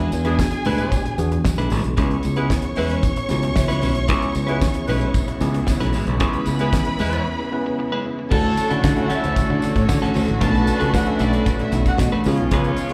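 Disco at 114 BPM in a straight 4/4, sultry and driving, heard as a live gig through the venue's PA with club reverb in a small room, and cut from a longer piece. A damped 70s drum kit with a fat snare and tight kick anchors the groove on kick, snare, hi-hat and crash, while a growly, up-front fingered electric bass sits prominently beneath, joined by very quiet low-tuned congas and a jingly, saturated tambourine in the background. A worn, slightly out-of-tune tine electric piano and a scooped, picked clean electric guitar carry the chords, with a dark, woody symphonic violin section as a second line and punchy, distant horn stabs, all four touched with slapback echo. The electric piano plays a fill from 3.3 to 4.1 seconds, just as a smooth, close studio string section enters at 4.1 seconds with sustained chords in the background. After a break from 7.3 to 8.3 seconds, the harmony shifts from E7 and C#m7 to Dmaj7 and Bm7, ending on C#7.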